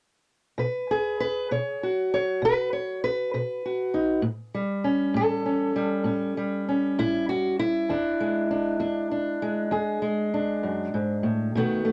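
Gritty and soulful, this short acoustic country blues excerpt moves at an unhurried 66 BPM in a straight 12/8, set in E major with the tuning pitched slightly sharp at A4 = 445 Hz. A fingerpicked steel-string parlour guitar plays alone from 0.6 to 11.9 seconds, ranging from its low E string up to C#5. Its tone is dark and boxy, and it sits up front in the mix. The harmony moves from B5 to A7 and settles on E7, giving the passage a classic blues turnaround feel. The sound is dry and close, like a 1970s studio session, with just a touch of light reverb around it.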